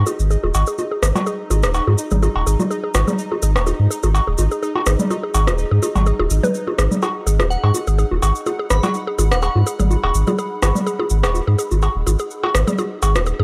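A deep, saturated sub bass opens this hypnotic, clinical minimal techno excerpt, sitting up front beside a bright, pulsing gated texture with chorus and built-in reverb, and a dark, warbling tape-like pad that adds a nostalgic lo-fi haze in the background. Almost at once a woody, round mallet-like synth pluck takes up a short riff through chorus and tape echo, while a filter sweep runs over the synth arpeggio sound for the whole clip. The groove, swung lightly on the 16ths, comes from overdriven electronic bongos, cowbell, rim click and congas, forward and analog with small room ambience and analog delay, joined by a grainy, close and dry cabasa. From 7.5 to 9.5 seconds a crystalline FM synth bell drifts in the background with tremolo and analog delay. The whole recording carries a gritty hardware character with cassette tape colouring and light reverb.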